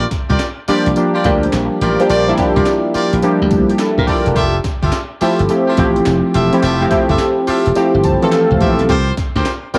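Detuned sawtooth keys sit up front in this upbeat, bouncy new jack swing clip, entering at 0.7 seconds with a round, fast-attack sound that decays, colored by chorus, phaser, a filter sweep and cassette tape. Underneath, a bright, punchy electric slap bass plays from the start, direct and amped. The sampler-style breakbeat kit is gritty and compressed, with a thumpy kick, a high-tuned snare, hi-hat, handclaps and tambourine, all run through cassette tape over a swung sixteenth-note feel. A clear, tight jazz-style horn section punctuates with stabs, its present tone run through cassette tape and tape echo. The harmony moves from Bb6 to Fmaj9 and on to C7sus4, and the synth keys add a fill at 7.8 seconds. It all sits in a light digital ambience with the intimate grain of a home cassette recording, cut from a longer piece.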